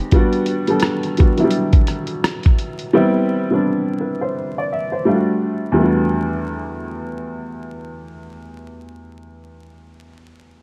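Vinyl crackle and light reverb frame this hazy, reflective lo-fi hip hop excerpt in E minor, moving at 85 BPM in 4/4 with swung sixteenths and tuned to A4 = 435 Hz. A dark, woody upright piano, slightly detuned and boxy with a short sustain and softened by cassette tape and a low-pass filter, carries the accompaniment through Em9, Gadd11, Dadd11/G and Em11. A compressed, muffled sampler-style drum kit with hi-hat, rim click and a thumpy kick sits up front from 0.1 to 2.9 seconds, after which the piano plays alone.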